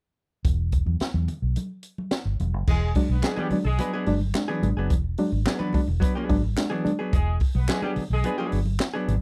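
A dry, close 1970s-style studio sound frames this funky, playful slice of a longer piece, opening at 0.4 s with a dark, foam-muted fingered electric bass and an up-front acoustic drum kit of punchy kick, high-tuned snare, hi-hat, handclaps and crash cymbal, while bright, damped congas sit in the background. At 2.7 s the groove settles onto an E9 chord as a tight, vintage horn section adds a second line and a reedy electric piano punches out stabs through its built-in speakers with tremolo. From 3.2 s a clean, compressed hollow-body jazz guitar joins with picked accompaniment.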